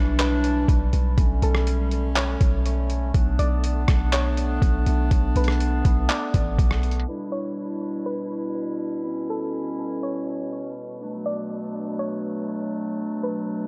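Atmospheric cloud-rap hip hop in B minor at 122 BPM with a half-time feel, this melancholic, hazy excerpt sets a soft, round pluck melody, darkened through chorus, low-pass filtering and tape echo, over clear, close-miked woodwind section chords that pump against the sidechain, while a deep, boomy 808-style bass and a muffled, pitched-down sampler-style drum kit of thumpy kick, handclaps, hi-hat and rim click play until 7.1 seconds, when they stop and a filter sweep carries the pluck and woodwinds through to 13.7 seconds in light digital ambience.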